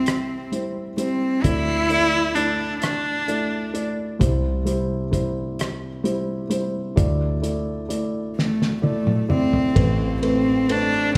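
A bowed cello sings a tender, heartfelt melody in its mid register over a felt-muted upright piano and a dark, round fingered electric bass, with a cloth-damped drum kit entering a moment later. This is a slow acoustic folk-pop ballad at 43 BPM in a straight 6/8, drifting between C and Dsus2 chords. The cello, played sul tasto by a single player with light vibrato, a soft attack and an airy bow, sits close and intimate at the front, while the piano sounds mellow and boxy and the foam-muted bass stays punchy. The drums are muffled and gritty, pairing a fat snare and tight kick with dark cymbals and a rolled-off top. After a pause, the cello returns at 8.4 seconds as the kit plays a fill up to 9.8 seconds, where the harmony opens onto Amadd9 in this brief cut from a longer piece. A moderate concert-hall reverb gives the whole blend a gentle sense of space.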